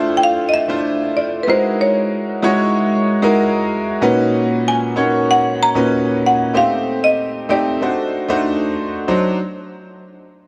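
A buzzing marimba played with medium hard mallets carries the melody, its hardwood bars sounding woody, dry and percussive, with a boxy small-room character. Beneath it, a clear grand piano supplies the accompaniment, smooth and vintage in tone, with long sustain, a subtle chorus, and a place up front in the mix. This pop excerpt moves in a straight 4/4 feel, and its mood is slick and bittersweet, shaped by rich extended harmonies such as Dm9, F#13, Bmaj9 and a closing turn through Am7b5 to D7b9. A lush hall reverb gives the pair a spacious glow. The marimba stops at 8.4 seconds, and the piano carries on alone until 9.4 seconds; a brief new section begins at 9.1 seconds, shortly before the piano finishes.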